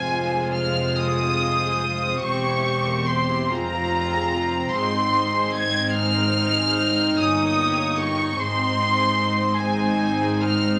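Swaying in an uneven, rubato 6/8 at 49 BPM, this lyrical, serene slow romantic movement for string orchestra in F minor, cut from a longer piece, sets an intimate, up-front violin melody with light vibrato high in its register over a second violin line and violas that share a pure, floating sul tasto sound with soft attacks, bowed cellos with light vibrato sitting in the background, and close double basses below, wrapped in a wet large-studio reverb across its 10.8 seconds.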